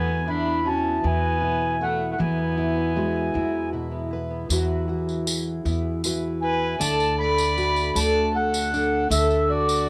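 Lightly reverberant and homespun, with cassette tape coloring the accordion, fiddle and both guitars, this brief excerpt of pastoral, gentle acoustic folk moves at 52 BPM in a straight 6/8, as a reedy, mellow accordion carries the melody up front over a nasal, gut-toned bowed fiddle line, a full-bodied fingerpicked dreadnought steel-string guitar with audible finger squeak, shimmering octave-doubled twelve-string arpeggios set in the background, and a woody, thumpy pizzicato upright bass, with a jingly vintage tambourine entering at 4.5 s and the harmony shifting from Eadd9 to D at 6.8 s.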